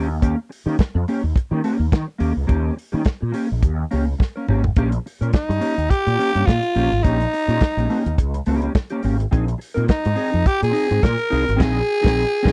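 A swung 105 BPM disco groove in 4/4 opens this driving, sultry excerpt from a longer piece: the round, punchy fretless bass with ensemble chorus and a dark, clean fingered electric guitar with analog chorus ride over Eb7 as a dry soul drum kit with dark cymbals and a tight kick joins at 0.2 seconds, and after a drum fill the raspy, growling tenor saxophone enters at 5.3 seconds with a breathy, lightly vibratoed solo before the harmony shifts to a rootless Fm7 and a band accent closes the close-miked, 1970s-style studio take.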